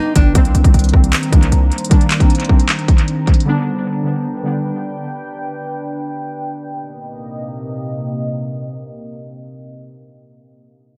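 Hip hop in a trap vein, this short cut from a longer piece moves at 154 BPM in a half-time feel in C minor, with a melancholic, menacing mood. Warbly lo-fi synth keys play detuned, nostalgic accompaniment with chorus and analog delay until 5.0 seconds. A deep, dark ambient pad holds sustained chords throughout with a slow attack, unison sawtooth body and built-in reverb. Up front, a trap drum kit of hard-clipped kick, crisp hi-hats and handclaps hits alongside a punchy, heavy 808-style bass from 0.2 seconds, the bass decaying by 1.7 seconds and the drums stopping at 3.5 seconds. The echo-heavy, low-passed digital ambience carries a filter sweep through the opening section as the harmony moves from Cm7 to G and back to Cm7 at 6.6 seconds.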